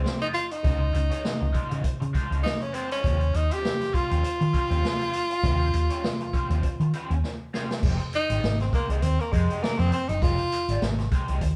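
A clear, up-front tenor saxophone with light vibrato and a soft attack opens this sly, swung funk excerpt alongside a round, dark hollow-body bass and a raw, overdriven wah guitar picked low in the mix, with a punchy, gritty big-band drum kit of kick, snare, hi-hat and crash arriving at 0.1 seconds and firing a fill at 7.2 seconds before the chords move from Dbmaj9 and Eb13 to Fm9, all in a moderate, roomy live-band reverb.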